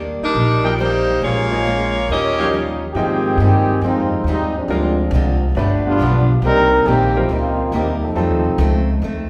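Brassy and energetic, this big band swing fragment, cut from a longer piece, moves at 138 BPM in Ab major, with a woody pizzicato upright bass up front and a boxy, picked ladder-braced acoustic guitar with audible finger squeak running throughout, while a clear baby grand piano with long sustain sits in the background. A mellow, softly attacked saxophone section carries the melody until 2.5 seconds, with smooth-topped trumpet section stabs tucked behind it. Entering at 2.4 seconds, a bright, present trombone section with light vibrato takes a solo from 3.0 seconds through to the end, all set in the lush reverb of a church or concert hall.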